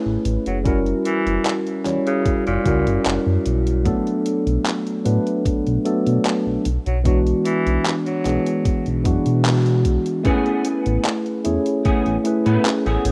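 Vaporwave fragment with a nostalgic, faded mood, where a clean tine electric piano with chorus and delay and a glossy, dark chorused synth bass carry the chords over a thumpy electronic kick and a detuned 8-bit drum machine of handclaps and hi-hat, while a breathy, raspy tenor saxophone with 12-bit sampler grit and tape echo sings the melody until 8.9 seconds, a band accent lands at 9.5 seconds, and a hollow-bodied semi-hollow electric guitar riff enters at 10.2 seconds, all wrapped in light reverb and the rough, cassette-tape haze of a home demo.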